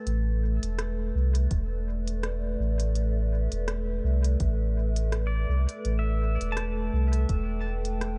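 A hazy digital ambience with softened highs frames this meditative ambient dub excerpt at 83 BPM, swung lightly on the sixteenths and resting on a single Cmaj7 chord. A warbling, detuned, dark tape-like pad holds sustained chords through chorus and its own reverb, while a round, up-front sine sub bass plays from 0.1 s, joined by crisp hi-hats and rim clicks from an electronic kit with dub echo and a soft electronic kick between 1.5 and 7.5 s. A bright, clean pedal steel guitar played with fingerpicks sounds briefly at the start and returns at 5.3 s with sliding, volume-swelled arpeggios through tape echo.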